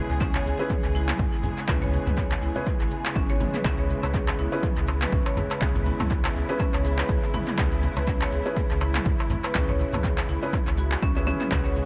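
A punchy, overdriven electronic kick drives this spiritual afro house excerpt, joined by a layered deep house kit with handclaps and toms, a deep round sub bass, bright hard-mallet marimba arpeggios, veiled con sordino strings holding a C#m7 chord, mellow felt-muted upright piano stabs with 12-bit grit and tape echo, grainy maracas, quiet low-tuned congas, and a crisp, dry darbuka entering at 4.0 seconds, all within an echo-heavy mix where the strings, piano, sub bass and marimba pump under the sidechain, with a drum fill at 3.3 seconds.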